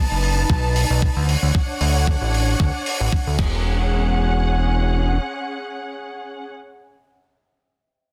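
A fat, detuned analog bass with a sawtooth edge, a filter sweep and a moving notch sits up front in this groovy, sunny nu-disco excerpt, pumping alongside a thumpy, tape-warm electronic kick that plays from 0.5 to 3.5 seconds. Behind them, a dark, woody string ensemble sustains lush bowed chords with vibrato from a distance, also pumping, while a dry, damped 70s kit adds crash cymbal and hi-hat with a rolled-off top. The harmony moves from B7 through Dmaj7 to E69 over a swung 16th-note feel, set in a small room with a dense, heavily limited master.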